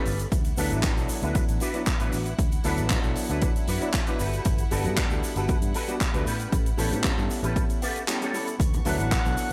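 Feel-good and groovy, this nu-disco excerpt moves at 116 BPM in a straight 4/4 in D major, its chords running from D69 through Gmaj9 and A9 before returning to D69 at 8.6 seconds. A punchy, layered electronic kick sits at the front alongside a tight, dry funk kit with handclaps, hi-hat and shaker, while a dark, round, foam-muted fingered bass pumps against the kick. An intimate grand piano with audible action noise and a boxy tone carries the accompaniment through tape echo, and a twangy, picked electric guitar with an envelope filter plays a riff coated in ensemble chorus and tape echo. Behind them, a clear, floating string section holds soft-attack chords that pump in the background. A clean electric guitar fill arrives near the end, then very quiet, band-limited cabasa and congas join at 8.6 seconds, and a tight, mellow trumpet section with light vibrato sounds a high F#5 through analog delay from 8.9 seconds. 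The overall sound is a dry, gritty hardware recording.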